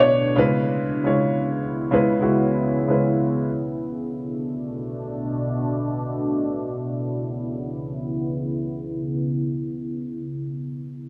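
Eerie and menacing, this free-time hip hop fragment in C# phrygian sets a dark, boxy baby grand piano with audible action noise, heard only until 3.5 seconds, over a deep, detuned sawtooth pad that holds slow-blooming C#m7 and Bm7 chords with chorus and a sub octave, while a filter sweep runs to 6.6 seconds and the dry, gritty recording carries transformer saturation and light digital ambience.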